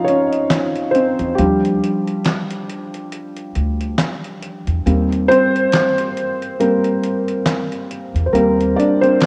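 A lazy swing on the sixteenths drives this cosy, dreamy lo-fi hip hop fragment in 4/4, where a gritty, overdriven sampler-style kit of handclaps, hi-hat and a fat snare sits back behind a soft, felt-muted upright piano that takes a solo through a break, its action noise audible and its tone softened by cassette tape. A woody pizzicato upright bass enters at 1.2 s, up front beside the piano, as the chords drift from Dbmaj9 through a rootless Ebmaj9 to Cm9. The rough home-demo mix, run through cassette tape, is bathed in a lush hall reverb, lending the whole an intimate, dusty glow.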